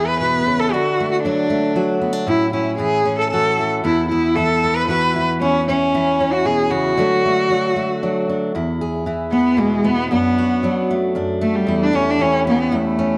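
In a straight three-four lilt, this nostalgic, hopeful folk fragment sets a rich, bowed cello melody, sung with vibrato and expressive portamento, up front beside a woody, full-bodied fingerpicked jumbo steel-string guitar on old strings, with the cello taking a featured solo from 8.5 seconds, all bathed in moderate spring reverb and cassette-tape character.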